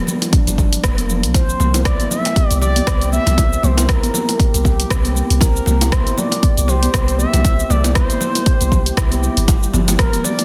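A deep, boomy 808-style bass opens this warm, driving afro house excerpt at 118 BPM with a light 16th-note swing, joined by a layered house kit of hi-hat, rim click and shaker and then a punchy, up-front electronic kick, while the bass and the meditative stainless-steel handpan arpeggios pump against the sidechain, bright, distant congas and round, low-tuned bongos sit in the background, and a smooth, expressive sawtooth-and-triangle synth lead with chorus, vibrato and tape echo enters at 1.3 s over chords moving from G7(no3) to C9 and then Gm7.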